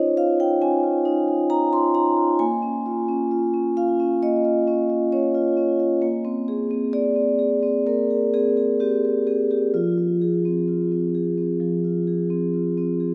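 Reflective and hypnotic, this contemporary classical excerpt features a solo vibraphone struck with soft mallets, moving at a slow 66 BPM in a straight 4/4 through chords of Dbadd9, Bbm7, Bb9 and Fm. The instrument sounds mellow, metallic and ringing with its motor off, close-miked, full and up front, spanning F3 to C6. A wet church reverb surrounds the 13.1-second passage, which is cut from a longer piece and tuned slightly low at A4 = 438 Hz.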